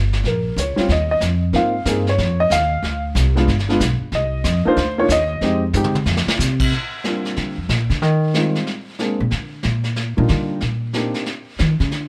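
A swinging 185 BPM groove in 4/4 drives this playful jazz piano trio excerpt, where a dark, mellow, slightly detuned upright piano with audible action noise solos up front, a brushed drum fill arrives at 5.8 seconds, and a woody pizzicato upright bass takes its solo from 6.7 seconds as the music settles into Bb major, with a vintage brush kit of dark cymbals, a punchy kick and a rolled-off top sitting in a small room, captured by close, detailed microphones with light reverb.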